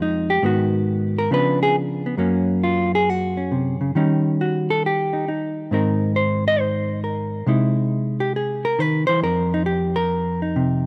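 A rough home-demo recording with light reverb carries this brief, cool, late-night solo jazz excerpt, where a dark, clean, fingered hollow-body electric guitar sits up front and swings through a moody progression from Abm7 and Db7b9 to Eb7#9 and Caug before settling on F5.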